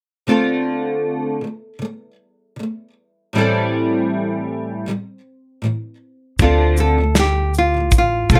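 Heartfelt and sunny, this short acoustic pop excerpt moves at 78 BPM in 4/4 with a light swing on the sixteenths. It opens on a double-tracked nylon-string guitar accompaniment, bright and small in tone, fingerpicked up front over Dm7 and then Am7. At 6.4 seconds, as the harmony returns to Dm7, a second fingerpicked nylon-string guitar enters with a warm, full-bodied, classical-sounding melody. At the same moment an up-front pizzicato upright bass with a woody character joins, along with a studio drum kit of punchy kick, medium-tuned snare and shaker. A light reverb gives the close, present sound a touch of space until the cut at 8.4 seconds.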